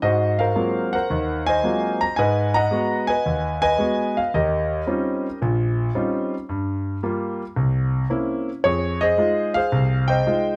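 Swinging 8ths at 111 BPM in 4/4 carry this brief solo jazz cut, where an intimate, up-front concert grand piano with deep bass and audible action noise ranges from Bb1 to Bb5 through Ab13, Abm7, Eb13, Gm7, C7b9 and Fm7 chords, set in light reverb for a natural, warm mood.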